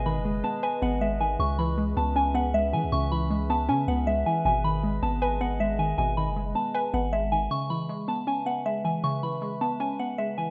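Hard-hitting yet brooding, this hip hop excerpt moves at 157 BPM with a half-time feel in C# minor, cut from a longer piece. A soft, pure synth bell carries the melody up front, its FM tone treated with chorus, phaser and digital delay. Beneath it, a warbly, dusty pluck with a detuned, lo-fi character and a filter sweep fills out the accompaniment, while a nostalgic, tape-like pad sustains the chords with a slow attack, ring modulation and a moving notch. A deep, sine-based 808-style bass holds long notes until 7.5 s, when the music shifts into its second section. The harmony circles between G#m and C#m7, and the whole sits in light reverb with the rough, dull-topped sound of a home demo.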